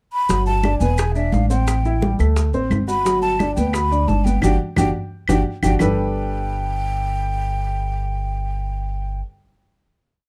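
Sunny and lively, this short Afro-Cuban jazz piece in G major moves at 174 BPM, with a breathy, hollow concert flute singing a motif-based melody through plate reverb over a natural-sounding baby grand piano montuno in octaves and a thumpy pizzicato upright bass tumbao that anticipates the chords, while tight high-tuned bongos in steady eighths, thick-skinned congas with slaps and open strokes, a woody two-bar claves time line and grainy maracas drive the groove through a band accent and drum fill until 5.9 seconds, leaving flute, piano and bass to close on a Gadd9 chord, all in a dark, warm production with light reverb.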